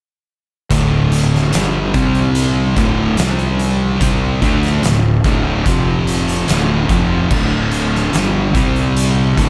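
A towering, low-tuned drum kit dominates this brooding, sludgy stretch of stoner and doom metal, its boomy kick, fat snare and dark cymbals sitting up front with a gritty, saturated punch in a big, pumping room. At a slow 73 BPM in D minor, the whole band comes in together at 0.7 seconds and holds a single heavy riff until 9.5 seconds, cycling through D5, C5 and F5 power chords before settling on a D minor chord and a final C5. Two thick fuzz guitars carry the riff from behind the drums, one with a warmer tone and the other darker, while a double-tracked, overdriven semi-hollow guitar adds a hollow-bodied shade to the same line. Underneath, a fingered electric bass with fuzz and overdrive growls through the low end with a bright, punchy bite. A light reverb wraps the mix, and the passage is cut from a longer piece.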